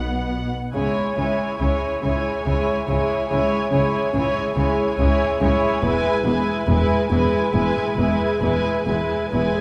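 In a rubato 3/4 at 70 BPM, this moving, sorrowful cinematic passage in C# minor opens with a brief, distant muted violin melody that ends after 0.5 s, leaving an up-front muted chamber violin section on a veiled second line and muted symphonic violas on accompaniment, both with soft attacks and smooth tops, over lush muted cellos and double basses carrying the bass, all dark and con sordino with vibrato, moving from C#m to E at 5.8 s in a wet recital-hall reverb.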